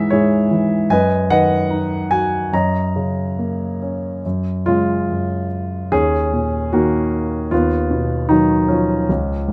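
A dark, mellow grand piano sits up front from the first moment, playing alone in a calm, lyrical classical style at a rubato 69-77 BPM in 4/4, tuned to A4 = 439 Hz. Beginning on a C#m/G# chord, the harmony settles into F# major from 4.2 s, moving through D#m7 and B/D# as the piano ranges from C#2 to A#5. Close, detailed microphones and light reverb give this short passage, cut from a longer piece, an intimate and gently warm feel.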